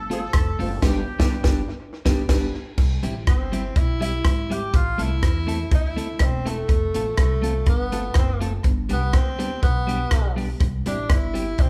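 A straight 4/4 ska groove at 123 BPM in C major drives this upbeat, cheerful excerpt, with an up-front, dry cocktail drum kit of punchy kick, high-tuned snare and dark cymbals under a thumpy, woody upright bass and a compressed clean electric guitar with vibrato; a loose, distant horn section and boxy, mellow upright piano stabs mark the opening band accent before a clear, roomy tenor saxophone solos from 3.3 s to the end, all played live in one room with a large studio reverb.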